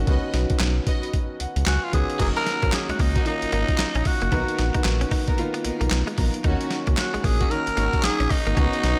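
A raspy, up-front tenor saxophone carries the melody from 1.7 s in this bouncy, confident R&B and new jack swing excerpt, its lines touched with slapback echo and delay over a swung, gritty, pitched-down boom bap sampler kit of thumpy kick, snare, hi-hat, handclaps and crash. A round analog bass and an intimate concert grand piano, which plays an early fill, anchor the accompaniment, while lush bowed string stabs sit in the background and a twangy, clean electric guitar riff with analog chorus enters at 2.2 s. A very quiet, evolving resonant pad adds sustained chords from 6.4 s, all set in a moderate recital-hall reverb for a big arena sound.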